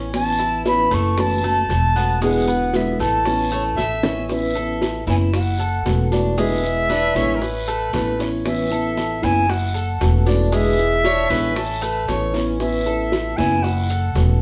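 A sunny, danceable Cuban son and guajira excerpt in A major at 116 BPM, cycling through Aadd9, F#m7 and E7. A woody, thumpy upright bass sits up front under a small, thumb-plucked nylon-string guitar and picked, metallic Cuban tres arpeggios on double strings, while round low-tuned bongos, raspy guiro and grainy maracas stay close and dry in the background. An airy, reedy concert flute with rolled-off highs carries the melody, a punchy trumpet with light vibrato and scooped notes adds a second line from 3.5 to 12.4 seconds, and a short drum fill leads into the next section at 4.3 seconds, all in a band playing live in one room with a wet studio reverb.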